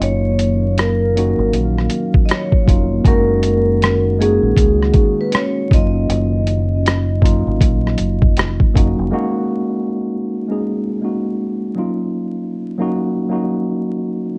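A swung, muffled lo-fi sampler-style drum kit sets a sixteenth-note lilt with a thumpy kick, hi-hat and rim click, sitting up front beside a round, dark dub bass played with the fingers in this hazy, nostalgic lo-fi hip hop excerpt. A worn, slightly out-of-tune tine electric piano, lightly overdriven, carries the chords, while a ringing vibraphone with medium hard mallets and slow motor vibrato plays the melody through delay until 8.3 seconds, over a very quiet, warbling, detuned ambient pad. At about 9.1 seconds the drums, bass and pad drop away, leaving the electric piano alone until the cut at 14.4 seconds.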